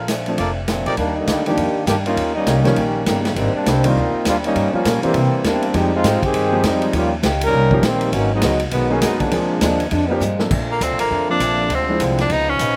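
Brassy and joyful, this swinging big band jazz excerpt opens with a soft-attacked trumpet section stab before a brilliant, tight, up-front trombone section takes a solo from 1.0 seconds, backed by a woody pizzicato upright bass, a drum kit with a punchy kick, crash, ride and hi-hat, a boxy, old-stringed picked acoustic guitar and a baby grand piano with short sustain in the background. After a drum fill at 10.2 seconds, an edgy, forceful tenor saxophone steps to the front with scooped notes and vibrato, over warm sustained chords from a second trombone section. The sound is dry and natural, with slapback echo on the trumpets, guitar and piano.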